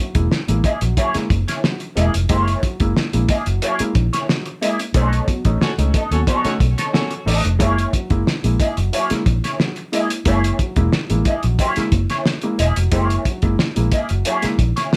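Funk at 90 BPM in a straight 4/4, this gritty, energetic passage sits in F# mixolydian and is cut from a longer piece. A cloth-damped, thuddy drum kit sits up front with a fat snare, tight kick and hi-hat, its muffled, saturated tone rolled off at the top like a lo-fi small-room take. Beneath it, a vintage muted fingered electric bass carries the low end with a dark, round, punchy, foam-muted sound, while a clean, picked semi-hollow electric guitar adds wah-coloured accompaniment and a worn, woody, slightly detuned upright piano punctuates with stabs. The harmony moves from F#9 to B9 at 4.9 seconds for a band accent, returning to F#9 at 7.6 seconds. During that accent a mellow, distant horn section slips in with a brief second line in octave doubling, touched with light vibrato and tape echo, before dropping out at 7.1 seconds. A light reverb gives the whole a modest sense of space.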